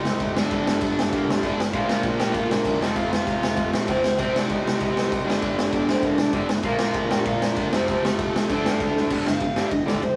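A rough rehearsal-room recording with tube saturation and light reverb captures an angry, raw punk rock fragment in G minor at 195 BPM, where an up-front garage drum kit with a boomy kick and a gritty, saturated sound in a pumping stone room drives a double-tracked, compressed distorted electric guitar riff, while a growly fuzz picked electric bass and a warm, overdriven garage guitar melody sit in the background, until a drum fill at 9.0 seconds leads into an overdriven electric guitar solo from 9.1 seconds.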